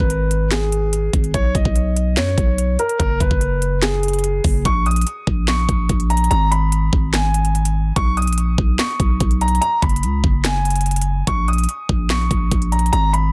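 A half-time trap groove at 145 BPM anchors this hard-hitting, dark hip hop passage in Bb phrygian, cut from a longer piece, with an electronic drum kit of knocking kick, sharp snare and crisp hats re-recorded in a small room and a growling, buzzy 808-style bass with a fast attack and decaying tail, both up front. Over them, a shadowy baby grand piano carries the melody with mellow tone, long sustain and tape echo, moving through chords such as Abm, Gbsus2, Bmaj7 and Bbm, with a second section arriving at 4.7 seconds. The mix is dry, dense and heavily limited in a modern style, with all three parts sitting close to the listener.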